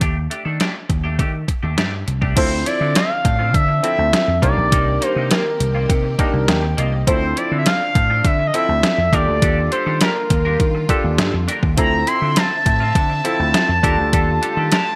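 A straight 4/4 groove at 102 BPM drives this danceable, late-night slice of early-eighties boogie funk in D minor, cut from a longer piece. A detuned 8-bit drum machine, thumpy and overdriven with a small-room crunch, sits up front alongside a punchy, amped slap bass, while a bright, compressed semi-hollow guitar picks a clean riff through analog chorus from the first beat. At 2.4 seconds the harmony moves from Ebmaj7#11 to Dm9, and three parts arrive together: a sawtooth-and-triangle synth lead carries the melody with a wave-folded, evolving tone and vibrato, a barky tine electric piano adds lightly overdriven accompaniment through a combo amp, and a lush bowed string section holds sustained chords in the background. The electric piano steps out with a short fill at 6.2 seconds. The chords cycle through Cm7, Dm9 and Ebmaj9#11 under light reverb, giving the whole a glossy, bright 1980s-style digital sheen.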